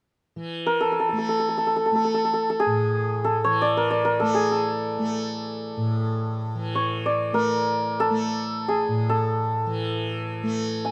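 A hammered, ringing santur carries the melody up front in this radiant, serene Indian classical passage in free time, entering at 0.7 seconds just after the drone. Alongside it, a bright, buzzing tanpura sounds from 0.4 seconds, softly plucked and shimmering as it holds the drone in its low register. The short cut from a longer piece, tuned to A4 = 444 Hz, sits in a dark production with light reverb.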